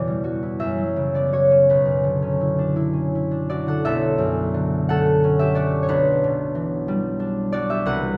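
A ringing, fingerpicked concert harp sits up front in this gentle, wistful classical solo, drifting in a rubato 6/8 across a range from B1 to F#5 through chords such as Em9, F#7sus4 and Bmadd9 as a short phrase plays twice within a fragment cut from a longer piece, all bathed in the lush reverb of a church or concert hall.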